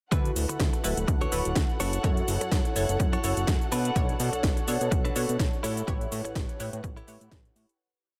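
An echo-heavy digital ambience surrounds this short, feel-good filtered disco house piece at 125 BPM in 4/4, with a 55% swing on the sixteenths in D major, moving through D6, F#m7, Bm7 and A7. A punchy, analog electronic kick sits up front with a four-on-the-floor pulse, joined by a layered, overdriven house kit of cracking snare, metallic closed and open hats and shaker, re-recorded in a large room. A fat, saturated analog bass built from detuned sawtooth and square waves jumps between octaves, while a funky polysynth holds mellow rootless chords with syncopated pushes, colored by chorus, phaser, cassette tape and dub echo. A bright, clean, direct-recorded electric guitar picks a compressed funk chord riff in close voicing, and a dark, woody studio string section bows lush sustained chords with vibrato and a held high note, roughened by 12-bit sampler grit. The bass, comp, guitar and strings all pump against the sidechain, and the whole piece plays as a drop that fades out from 5.2 seconds to its end at 7.8 seconds.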